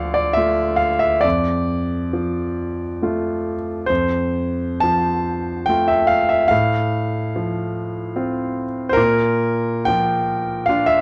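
Rubato phrasing in 3/4 drifts between 61 and 78 BPM in this mournful, wistful romantic nocturne for solo piano in D minor, cut from a longer piece and tuned to A4 = 439 Hz. The concert grand sits up front and intimate, reaching from deep bass at D2 up to A5 with long sustain, a polished tone and audible action noise, as the harmony moves from Dm through Dm/F and F/A to Bb at 9.0 seconds. Light reverb surrounds a dark, warm production with nothing above 10.9 kHz.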